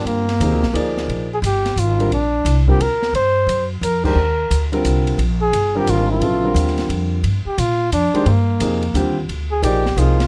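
Modal jazz in a swinging 3/4 at 176 BPM, searching and spiritual in mood, set in G Phrygian and moving from Gm7 to Ebsus2 and back. A veiled, bucket-muted trumpet with light vibrato carries the melody up front. Beneath it sit an intimate concert grand with audible action noise, a woody pizzicato upright bass, and an open jazz kit that enters at 0.1 seconds with dark cymbals, a high-tuned snare and a punchy kick. The whole band hits an accent at 4.0 seconds, and the close, detailed sound with little reverb keeps this short cut from a longer piece dry and near.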